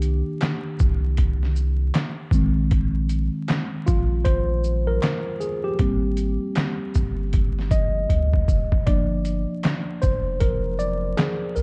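A swung 78 BPM groove in 4/4 from a compressed, overdriven sampler-style drum kit (thumpy kick, medium-tuned snare, handclaps, hi-hat and shaker, pitched down and muffled) drives this reflective, nostalgic lo-fi hip hop excerpt, where a deep, round dub sub bass sits beneath a worn, slightly out-of-tune tine electric piano that solos up front through cassette-tape haze and a low-pass filter over Cm9, Bb7sus4, Abmaj9 and Gm7, with a drum fill from 8.1 to 8.9 seconds and the dark mix resting in light reverb dusted with vinyl crackle.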